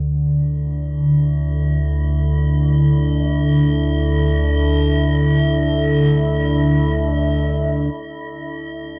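Dark ambient drone, ominous and dark, cut from a longer piece. A deep, rumbling drone sits up front from the start, colored by phaser and its own reverb. It is joined at 1.2 seconds by an eerie, warbling metallic drone with an inharmonic, vintage FM character, and at 1.5 seconds by a moody, detuned pad holding sustained chords over a sub octave, all within a warm production and a huge ambient reverb with an 8.0-second tail.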